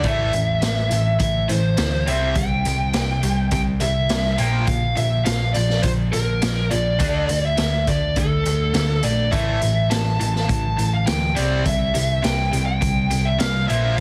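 Hard rock at 103 BPM in A phrygian, heavy and driving, where a dark, up-front overdriven lead guitar carries the melody over a bright high-gain distorted riff guitar, a very quiet overdriven semi-hollow guitar also playing a riff, a round, dark hollow-body bass and a gritty, boomy garage drum kit with a rolled-off top, all in a small room with a heavily compressed radio sound, moving through Am, C, Bb5 and D5 in this 14-second excerpt cut from a longer piece.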